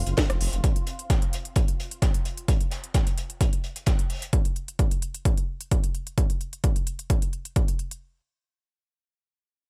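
Intense and dark, this driving peak-time techno excerpt at 130 BPM in a straight 4/4 opens with a thick, menacing detuned saw bass pumping under tube saturation and an ethereal pad with chorus and phaser sitting in the background, both heard only for the first 0.6 seconds, while from the opening moments a punchy, up-front analog kick drives on with an overdriven techno kit of cracking snare, rim click and smooth hats, joined until 4.3 seconds by a gritty, high-passed breakbeat kit with a high-tuned snare and pumping hats, all in a dry mix.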